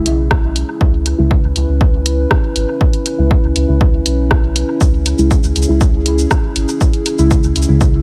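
A dark, detuned analog pad and a soft, deep chord stab with chorus, phaser, dub echo and a filter sweep open this cavernous, hypnotic dub techno excerpt in C# minor at 120 BPM, both breathing with sidechain pumping over a single C#m chord. A round sub bass of triangle and square waves follows at 0.1 seconds alongside a dry analog drum machine of hi-hat, rim click and shaker trailing dub echo. A punchy, up-front electronic kick lands at 0.3 seconds, and a light reverb frames the steady 4/4 pulse.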